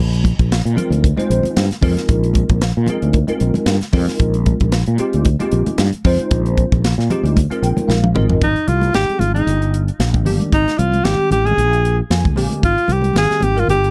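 The recording is dry, with little reverb, cut from a longer electric jazz fusion piece in Bb mixolydian at 114 BPM, its 16ths lightly swung for a slick, funky feel. A growly, punchy fretless electric bass sits up front with a tight funk drum kit whose polished, airy sound carries a medium-tuned snare and a firm kick. Softly played, high-tuned congas with a thick-skinned, vintage tone sit in the background. A bell-like tine electric piano with ensemble chorus joins at 0.8 seconds, comping cleanly over a Bb9sus4 vamp and adding short fills. After a drum fill at 7.9 seconds, a clear alto saxophone takes the solo melody at 8.4 seconds, jazz-styled with vibrato and a soft attack. Beneath it the harmony moves through Abmaj7, Ebmaj7/G and Bb13.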